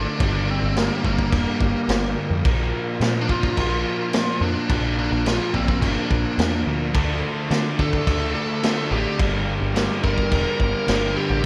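A punchy vintage drum kit sits up front with dark cymbals and a rolled-off top, driving this gritty, brooding classic rock fragment at 107 BPM in 4/4 over a Gm, Bb, Dm, Gm progression. A round, foam-muted overdriven bass and a biting lead guitar melody fill out the mix, while a sludgy guitar with slapback echo plays a riff in the background alongside a very quiet double-tracked crunchy guitar riff, joined at 6.9 s by a bright distorted guitar. A very quiet tonewheel organ holds full, lightly overdriven chords through a slow rotary speaker, all set in a small, lightly reverberant room.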